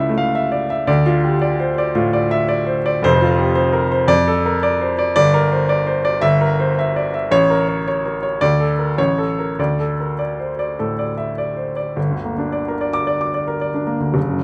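This is a virtuoso classical piano study in D minor, heard in a short passage of about 14.4 seconds taken from a longer work. The mood is passionate and agitated, moving at roughly 111 BPM in 4/4 with a flexible, rubato feel. A single baby grand piano carries the whole piece, its warm, natural tone sitting up front and ranging from deep in the bass up to the high treble. The harmony circles around D minor, passing through G minor and a diminished chord before alternating between A major and D, then turns toward new material on G minor at 12.0 seconds. Close, detailed microphones capture the instrument, set within a moderate recital hall reverb that lends a gentle bloom around the notes.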